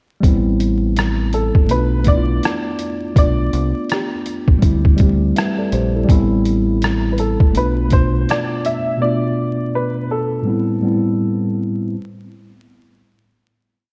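A muffled, pitched-down sampler-style drum kit with a thumpy kick anchors this reflective, nostalgic lo-fi hip hop piece, its slumped, off-grid beat stopping at 8.8 seconds, while a worn, slightly out-of-tune tine electric piano repeats rootless push-rhythm chords with grace notes and short fills like a sampled loop through cassette tape and a low-pass filter, a dark, round fingered electric bass plays a sparse line with slides and chromatic approach notes until 8.2 seconds, and a woody, slightly detuned upright piano enters at 1.3 seconds with call-phrase motifs through a low-pass filter and delay, over light reverb and vinyl crackle.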